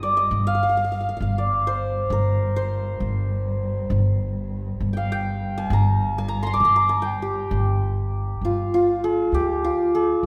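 A straight 6/8 pulse at 66 beats per minute, counted in dotted quarters, carries this longing, hypnotic Persian piece in dastgah shur on G, tuned to A4 = 441 Hz and cut from a longer performance. Up front, a hammered santur rings and shimmers through a melody spanning F4 to D6, over a woody pizzicato upright bass with steel strings holding the low register between G1 and D2. A single bowed cello sustains a dark, smooth-topped drone with vibrato on G2 until 8.5 s, while a wet church or concert-hall reverb lends a 1.9-second tail, and a new section begins at 8.4 s before the recording ends at 10.3 s.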